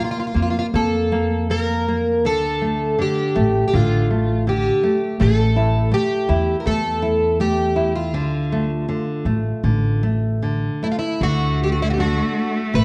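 A worn, warbling cassette-tape sound with drifting pitch and a moderate recital-hall reverb colours this nostalgic, tender fado-style ballad, cut from a longer piece and played with a free rubato feel. Up front, a picked, plugged-in twelve-string acoustic guitar carries the melody with a boxy, shimmering, octave-doubled parlour tone through analog chorus. Beside it, a bright, full-bodied nylon-string guitar fingerpicks the accompaniment, with finger squeaks audible on both guitars, and a woody, thumpy pizzicato upright bass joins at 0.4 seconds; at 11.2 seconds a clear, focused bowed cello enters with vibrato for a brief second line.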